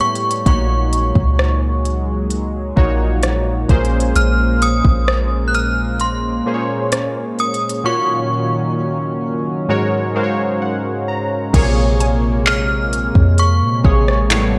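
Digital ambience surrounds this sensual, late-night slice of contemporary R&B, cut from a longer piece in a straight 4/4. Up front, a smooth electronic drum kit with a soft kick, handclaps, rim clicks, hi-hat and crash carries tape character, vintage 12-bit sampler grit and the air of a large room, while a deep, round 808-style bass enters at 0.5 seconds. Warm analog keys, built on sawtooth and detuned and warbling with a noise layer, a filter sweep and chorus, provide the accompaniment and play a fill beginning at 9.7 seconds. Above them, a chiming, inharmonic FM synth carries the melody through ensemble chorus, tremolo and delay, and a shimmering, retro pulse-width pad holds bright, sustained chords. A woody, mellow mallet-like synth pluck with chorus and delay slips in at 12.0 seconds in the background, shortly after the harmony returns to Bbm9.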